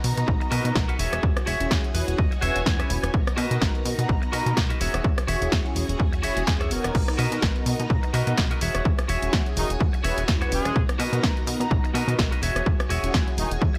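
Joyful and sunny, this filtered disco house excerpt rides a swung sixteenth-note groove, with its parts breathing together under sidechain pumping. An up-front, overdriven electronic kick drum, re-recorded in a large room, anchors a punchy analog drum machine whose crash cymbal, hi-hat, rim click and snare carry their own grit, while a funky, plucky analog bass with a quick filter pluck fills the low end. Mellow synth brass, round and dark with detuned sawtooth tone, chorus, phaser and vibrato, shares the harmony with a lush, vintage string machine ensemble glowing in the background through phaser and ensemble chorus, as the chords alternate between Bmaj7 and E69. A bright, twangy clean electric guitar plays a compressed picked riff with spring reverb, breaking into a fill at 1.7 seconds. At 9.6 seconds a loose horn section joins with a pop-style melody in octave doubling and light vibrato, all within a dry, close-sounding mix.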